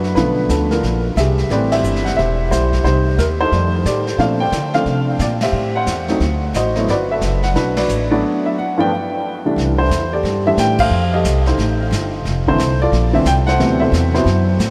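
Jazz piano trio in a playful, swinging mood, cut from a longer piece and bathed in a huge, dreamy reverb that soaks the whole mix. A dark upright piano carries the melody throughout, its mellow, slightly detuned tone sitting up front with audible action noise and a diffuse ambient delay trailing behind it. The pizzicato upright bass is woody and steel-strung, also close and present, while a vintage brush kit sits further back with a smooth, rolled-off top, dark cymbals, a medium-tuned snare and a punchy kick. The harmony moves through rich extended chords such as Bbmaj9, D7b9 and Gmaj9 before a new section begins at 9.6 seconds with C69 and F9, and the trio hits shared accents at 1.7, 5.4 and 10.7 seconds.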